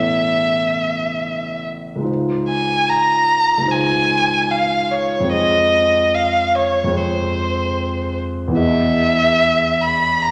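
A single bowed violin carries the melody up front, its tone rich and focused, with vibrato and a smooth top, in this short impressionist classical excerpt for violin and grand piano. Beneath it, a dark, mellow concert grand supplies intimate accompaniment with deep bass and audible action noise, moving through Aadd9, Dbmaj9, Fm7 and Emaj7 at a rubato 73 BPM in 4/4. Both instruments sit in a wet recital hall reverb of 1.4 s, giving the passage a luminous, dreamy air.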